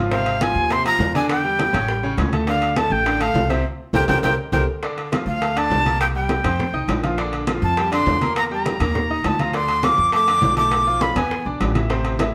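A breathy, up-front jazz flute carries the melody in this festive, danceable salsa excerpt, its crisp attack and audible chiff giving each note a reedy edge high in its register. Beneath it, a brilliant grand piano supplies the accompaniment with a polished, present tone, long sustain and a touch of audible action noise, while a woody upright bass plucks thumpy, dark lines with steel-string clarity. The percussion has a vintage, band-limited character: timbales ring out with a metallic shell, congas sit low-tuned and damped with soft hands in the background, and tight, high-tuned bongos fill in behind them. Moving at a brisk 204 BPM in straight 4/4, the band plays live together in one room with moderate studio reverb. A full-band accent begins at 3.6 seconds, capped by a drum fill that leads into a new section at 4.8 seconds, where the harmony moves through richer chords such as Bb6/9 and a diminished chord before the clip ends at 12.3 seconds.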